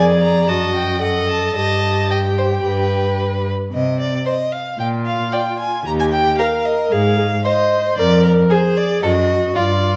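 A dramatic, urgent passage from a quick classical-period string quartet movement opens with all four bowed parts at once: an up-front first violin carries a smooth, even melody with rich vibrato, a second violin adds a focused second line until 9.6 s, a distant viola fills in the accompaniment, and a clear, up-front cello anchors the bass, all set in a wet recital hall that lends a lingering ambience to the darkly shifting harmony.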